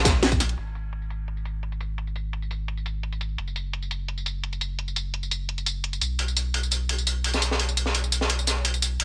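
Set in a studio reverb, this dreamy, melancholic liquid drum and bass passage in G# minor runs at 171 BPM, cut from a longer piece. A deep, round sine sub bass with tube saturation holds the low end throughout, while an up-front electronic garage kit carries cracking snare, bright hi-hats, tambourine and crash cymbal under low-pass filtering. A gritty, dark breakbeat kit with a high-tuned snare and high-passed hats, recorded in a small room, appears briefly at the start and returns from 6.2 seconds to the end.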